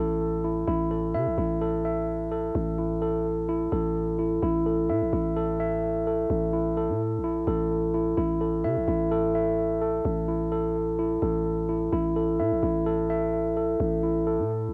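A mellow tine electric piano plays arpeggios from E4 to E5 through cassette tape and analog delay, sitting up front beside a growling, buzzy 808-style bass with a fast attack and decaying tail, in this menacing, eerie trap clip at 128 BPM in half-time over an A5 chord, tuned to A4 = 444 Hz and bathed in a wet spring reverb that gives the home cassette recording its haunted air for the full 14.7 seconds of a longer piece.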